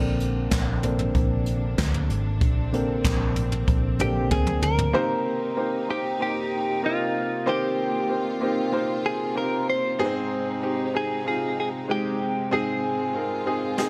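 A woody, up-front upright piano leads this uplifting, hopeful piano-driven pop excerpt, supported by lush bowed strings holding sustained chords, a dark, round, foam-muted electric bass and a jazz kit played with brushes, with a boomy kick, handclaps, hi-hat, snare and toms. A clean, compressed electric guitar picks out the melody through analog chorus from 4.0 seconds, shortly before a drum fill arrives at 4.3 seconds, and the bass and drums drop away at 4.9 seconds, leaving piano, strings and guitar to carry the straight 4/4 feel. Light small-room reverb gives the sound a natural, intimate space.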